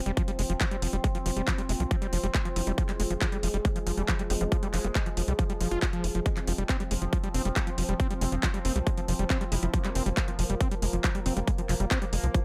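A straight 4/4 pulse drives this hypnotic psychedelic trance excerpt, with a punchy, overdriven electronic kick up front and a layered, overdriven dance kit adding handclaps and hi-hat. Underneath, a tight sequencer bass built from sawtooth, square and wave-folded tones plucks out the low end, while a gritty, distorted acid bass riff sweeps its resonant filter through sidechain pumping and tape echo. A bubbling texture of sustained chords steps randomly through its filter with chorus, reverb and pumping, and from 0.8 s a juicy, detuned blip pluck plays a very quiet second line, all in a dry mix.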